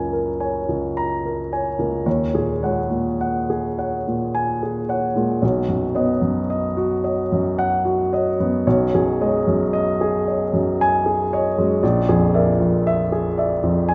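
A warm, polished baby grand piano sits up front in a church or concert hall, its long sustain blooming into moderate reverb as it plays a serene, dreamy impressionist solo in a rubato 3/4 at roughly 51-59 BPM, drifting through F#add9, D#m7, Badd9 and D#m7/B before arriving at A#7#11 across this short cut from a longer piece.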